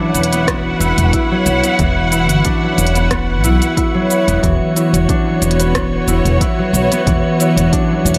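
Mystical and earthy, this organic downtempo excerpt at 91 BPM in 4/4 with a light 16th-note swing sets a ringing, up-front concert harp playing delayed arpeggios over lush, distant bowed strings holding sustained chords with sidechain pumping, a woody, thumpy pizzicato upright bass that pumps along with them, a calm glassy texture of drifting overtones with chorus in the background, and a small-room deep house kit of cabasa, smooth hi-hat and rim click joined at 0.5 seconds by a punchy electronic kick, over an Esus2 to Bm/E progression in light reverb.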